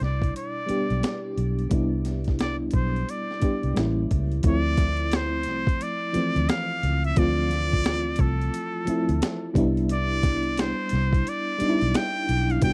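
A dry, close 1970s-style studio sound frames this sultry, soulful neo-soul R&B excerpt at 88 BPM with a swung 16th-note feel in D dorian, where a breathy, nasal straight-muted trumpet carries the melody with vibrato and tape echo over a mellow FM electric piano with tremolo, a round, punchy foam-muted fingered bass, and a gritty boom bap sampler-style kit with a thumpy kick, high-tuned snare and hi-hat, moving from Cmaj9 through A7b9 to a long Dm7 at 4.4 seconds before returning to Cmaj9.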